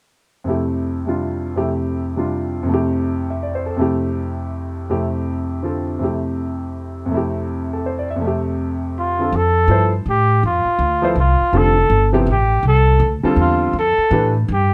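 A swung 3/4 pulse at 162 BPM carries this hypnotic, searching modal jazz excerpt in F major, opening on a clear concert grand piano with deep bass that sets an Fmaj9 colour before playing accompaniment until 14.3 seconds. The breathy trumpet enters at 9.0 seconds with a dark solo melody, its notes scooped and touched with light vibrato, sounding distant and roomy. The pizzicato upright bass joins at 9.3 seconds with a woody tone, all under light reverb.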